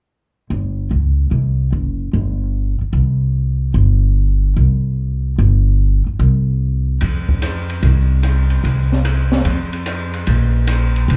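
Heard through a club's sound system, this short swinging jazz excerpt carries a light touch of room ambience and a live, in-the-venue feel. The playful mood rides a 147 BPM tempo in 4/4, with a strong swing on the eighth notes. An acoustic upright bass opens at 0.5 seconds, plucked and up front, with a woody, thumpy tone from gut strings, moving between F1 and F2. At 7.0 seconds, as a new section begins, an open jazz drum kit joins with hi-hat, kick drum, ride cymbal and snare drum, sitting lower in the mix than the bass. The kit sounds dark and smooth, as if in a small room, with dusky cymbals, a high-tuned snare, a punchy kick and a rolled-off top end. Both parts play until the cut at 11.2 seconds.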